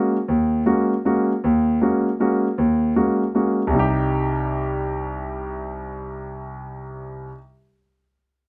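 A warm, natural grand piano sits up front as the lone voice in this brief cut from a longer jazz piece, moving at 156 BPM in a swung 3/4 with a cool, spiritual mood. It opens on an Ab9sus4 voicing and shifts to C minor at 3.7 seconds, staying within a low-to-middle register. The dark, warm production places it in a moderate studio ambience with a half-second tail.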